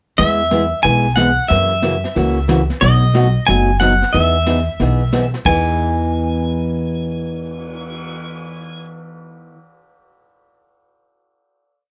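A bright, clean pedal steel guitar sings a playful, cheerful motif-based melody up front in this short, complete western swing country piece at 182 BPM in E major, backed by full-bodied four-to-the-bar picked acoustic guitar, a woody, thumpy pizzicato upright bass playing a two-beat root-and-fifth line, and a vintage brush kit with dark cymbals and snare sweeps, all under light reverb, moving through E, F#7 and B7 before settling on a final Emaj7 chord from 5.5 seconds.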